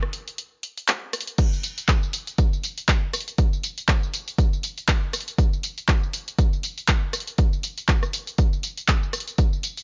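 Sensual and groovy, this house excerpt moves at 120 BPM in 4/4 with a 57% swing on the sixteenths. It opens with a punchy analog drum machine laying down crash cymbal, handclaps, hi-hat, rim click and tambourine, overdriven and up front, with the hats, cymbals and percussion pumping against the sidechain. A filter sweep runs through those first moments before the drop lands at 1.4 seconds, when an electronic kick drum enters, dry, overdriven and punchy, sitting louder than the drum machine. The kick carries on until 9.5 seconds, while the drum machine continues to 9.8 seconds. The overall sound is close and dry, with little reverb and a dark top end that keeps nothing above 7.5 kHz.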